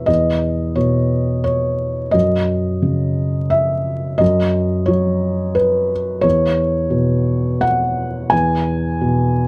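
A soft, felt-muted upright piano opens this intimate, reflective neoclassical minimalist excerpt, playing solo in a rubato 3/4 around 87 BPM, its dark, mellow tone reaching from E2 to G#5 with audible action noise close up front, set in light reverb and vinyl crackle, moving from E5 through F#5 to a bare pause and settling on Esus2 at 6.2 seconds.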